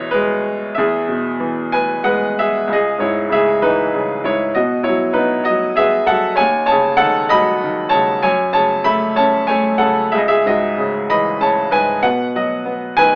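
A bright, up-front baby grand piano plays alone in this brooding, bittersweet fragment of a lyrical classical piece, moving in a rubato three-beat sway across a range from C#2 to B5, shifting at 2.7 seconds from an opening E chord into a longer passage through C#m7, G#m7/B, D#m7b5 and F#m7, all framed by light reverb and a boxy AM-radio tone.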